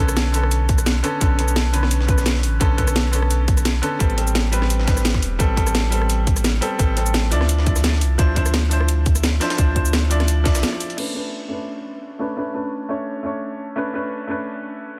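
Liquid drum and bass at 172 BPM in 4/4, with a light swing on the sixteenths, this soulful, melancholic excerpt from a longer piece moves through Bm9, Am9 and Dm9 chords before returning to Bm9. A bright, worn baby grand piano sits up front as accompaniment for the full 15 seconds, intimate and brilliant with short sustain and audible action noise, softened by a low-pass filter and trailed by digital delay. Beneath it, a deep, round sine sub bass holds sustained notes with a fast attack, while a tight, tape-warm electronic kick, re-recorded in a large room, anchors the groove. Two drum kits layer the top end: an overdriven drum and bass kit with a cracking snare, bright hats, crash, rim click and shaker, and a gritty, pitched-up breakbeat sampler kit with a high-tuned snare, high-pass filtered and tucked in the background. The drop ends in a band accent and short break at 10.6 seconds, after which the piano carries on alone within digital ambience under a dense, heavily limited modern master.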